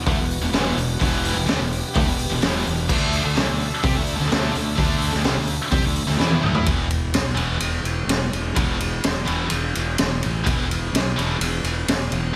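Hard rock, heavy and menacing, in a straight 4/4, cut from a longer piece. A raw garage drum kit sits up front with a boomy kick, a high-tuned snare and a gritty, saturated sound with a rolled-off top. Beneath it, a growly fingered bass pushes a fuzz-laden overdrive. A scooped, high-gain guitar, picked and double-tracked, carries the riff throughout, joined for the first half by a sludgy overdriven guitar set in the background. A lush, airy pad of detuned sawtooth and square waves with a noise layer holds soft-attack chords under chorus behind the band; it and the sludgy guitar drop away around 6.7 seconds, just after a drum fill, as the harmony moves from Em and D5 to E5. Light reverb lends the mix a small room ambience.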